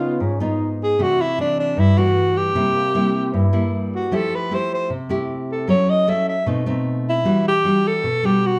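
A breathy alto saxophone carries the melody up front in this intimate, wistful bossa nova excerpt at 153 BPM, its whispered subtone, soft attack and light vibrato giving the jazz line a clear, hushed quality. A fingerpicked nylon-string guitar sits equally close, full-bodied and deep in classical character, moving through rich chords such as Fmaj9, B7b9 and Em9. A warm trombone adds a softly vibrating second line beneath the saxophone until 3.8 s, and the band, playing together live in one room, is bathed in moderate large-studio reverb.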